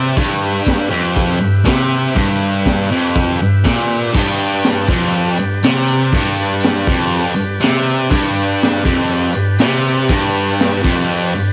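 A fuzz guitar riff, double-tracked and up front, opens this raw, rowdy garage rock excerpt in G mixolydian at 121 BPM alongside buzzy sustained chords from an overdriven combo organ with heavy vibrato; a gritty, saturated breakbeat drum kit with dark cymbals, a high-tuned snare, a tight kick and a rolled-off top arrives at 0.2 seconds, a jingly tambourine sits in the background from 0.6 seconds, and the whole take carries the character of a home cassette recording in a small room.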